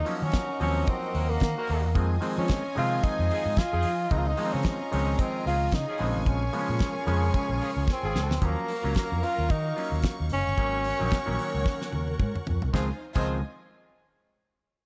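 Disco at 111 BPM in Db major, this joyful, danceable passage is cut from a longer piece and rides a lightly swung sixteenth-note feel in 4/4. A breathy tenor saxophone carries the melody up front, its whispered, intimate jazz-style tone carrying a tape echo, before it drops out at 12.2 seconds. Beneath it, a dry 70s drum kit with a fat snare and tight kick sits forward alongside a round, dark fingered electric bass, while a nasal, hollow clav played through a combo amp fills in the accompaniment. In the background, a smooth violin section plays a second line, a lush, focused string section holds sustained chords, and a vintage pop-style horn section enters at 1.2 seconds with loose stabs. The harmony moves through Ebm9, Fm7, Dbmaj9 and Bbm9, with drum fills marking the turns at 7.9 and 11.7 seconds, and the passage settles on Dbmaj9 under a light reverb.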